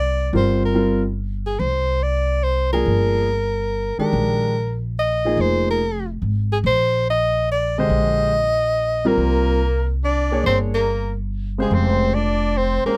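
A warm, subtone soprano saxophone melody with light vibrato opens over woody pizzicato upright bass and a warm grand piano, drifting through suspended C and Bb chords in this searching, hypnotic modal jazz waltz at 142 BPM with a swung 3/4 feel in C minor, before a raspy, growling tenor saxophone slips in beneath at 9.1 seconds, all captured close and dry.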